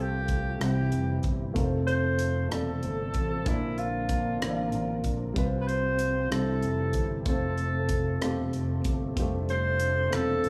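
Slow gospel in a straight 6/8, this short cut from a longer piece feels uplifting and hopeful. A breathy alto saxophone carries the melody up front in a soft, whispered jazz style with light vibrato, its tone intimate yet roomy. Beneath it, a dark upright piano accompanies with a woody, slightly detuned character and audible action noise. A fingered electric bass anchors the low end with a round, punchy sound, while a tonewheel organ through a rotary speaker adds very quiet chorus-tinged sustained chords. A distant French horn section, also very quiet, holds dark classical-style chords in the background. The crisp fusion drum kit enters at 0.3 seconds with hi-hat, rim click and a punchy kick, all set in a light studio reverb over a progression that resolves from Csus4 to C and back home to F.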